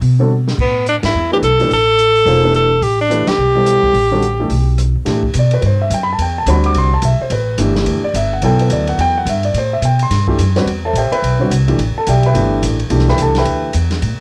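A brisk swung 4/4 groove opens this cool, searching modal jazz excerpt, with a drum fill at 0.3 seconds from an airy small-room kit (dark ride and crash cymbals, hi-hat, rim clicks, a medium-tuned snare and a boomy kick) and a woody pizzicato upright bass with steel strings and transformer saturation sitting up front. A warm grand piano comps rootless and suspended voicings, while a bright tenor saxophone leads from 0.6 to 4.8 seconds with light vibrato and scooped notes, punctuated by band accents. The drums and piano carry a cassette-tape coloring, and the whole session has the moderate studio ambience of a home recording on cassette.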